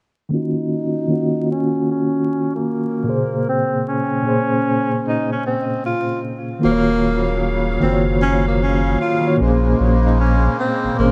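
Reflective and hazy, this lo-fi hip hop fragment in swung 4/4 opens at 0.3 s with a mellow, close-miked tenor saxophone playing a jazz-style solo with light vibrato and scooped notes. It sits over a reedy electric piano whose fast tremolo comes through its built-in speakers, and both parts are softened by low-pass filtering and analog delay while a filter sweep runs through the opening section. At 6.6 s a round, sine-like sub bass arrives up front beside a shimmering musette accordion holding airy chords, all set in an echo-heavy small-room mix with echo chamber reverb and vinyl crackle as the harmony moves between Ebm9 and Bbm9.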